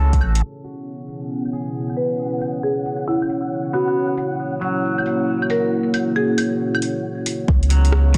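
A clean, twangy electric guitar with tape echo and a dark, detuned sawtooth pad with chorus and phaser open this wistful, nocturnal future garage excerpt at 136 BPM in C# minor, both pumping with the sidechain alongside a round sine sub bass that drops out at 0.4 s and returns at 7.5 s with the overdriven electronic kick. A deep house kit of metallic hi-hats, claves and rim clicks swings on the 16ths under a filter sweep as the chords move from C#m7 to F#7, while a woody hard-mallet marimba carries the melody through an analog delay from 2.0 s. A grainy, flickering granular texture sits in the background, and the dense, heavily limited master has a light digital ambience.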